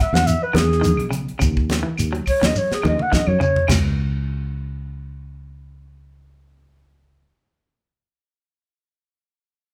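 Over a swung sixteenth-note groove, this funky, intense afrobeat fragment sets a breathy, subtoned clarinet soloing up front with jazz-style vibrato and scooped notes over a slightly broken-up, twangy guitar's arpeggios, a tight, dry funk kit that plays a fill from 2.5 seconds, background congas, grainy shekere and woody claves, and a round, foam-muted fingered bass that carries on alone once the band stops near 3.8 seconds, until 7.2 seconds.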